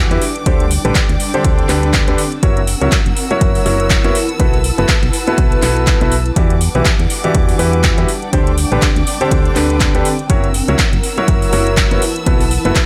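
A clear, up-front grand piano riff with dub echo and a low-pass filter opens this energetic, soulful piano house passage at 122 BPM with swung sixteenths, alongside lush, vibrato-rich violin chords and a round, dark FM bass, all pumping to the sidechain, while a blurred granular pad drifts in at 0.2 seconds, house-kit handclaps and metallic hi-hats arrive at 0.1 seconds, and a dry, punchy electronic kick lands at 0.5 seconds over a cycle of D7sus4, F#7, B7sus4 and Em9.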